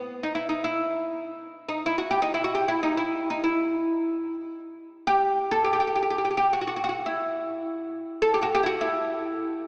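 Melancholic and full of longing, this short cut from a longer Arabic maqam piece features a solo oud, woody and plectrum-plucked with fretless, double-string resonance, sitting up front for its 9.6 seconds while a wet church reverb trails behind it and the whole recording has a small-speaker sound.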